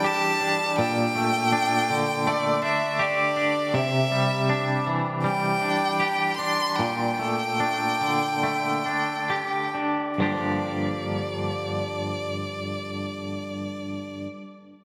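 This brooding, melancholic rock excerpt opens with a twangy, compressed electric guitar picking clean arpeggios, joined at once by a single bowed violin carrying the melody up front. The guitar's tone is shaded by tremolo along with slapback and tape echo, giving its low-to-middle register a shimmering, haunted quality. Above it, the violin sounds clear, biting and intense, with vibrato and an airy edge to the bow, its line also trailed by slapback and tape echo. The pace slows from 3.7 to 10.2 seconds, drawing out the harmony as it moves between major and minor colours. At 10.2 seconds a new section settles onto a minor seventh chord, and throughout, the two parts ring out in a lush hall reverb that lends the recording a big arena sound.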